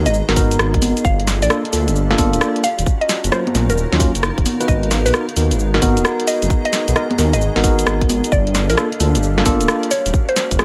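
A swung two-step garage groove, with a tight electronic kick entering at 0.4 seconds beneath a kit of cracking snare, hi-hat, rim click, shaker and congas, drives this bouncy, late-night UK garage passage, as a deep, rumbling detuned saw bass sits up front, a worn, slightly out-of-tune electric piano drops delayed stabs, a woody, round synth pluck carries the chorused, tape-tinged melody, and a smooth analog pad and a cloudy granular pad pump softly in the background under light reverb.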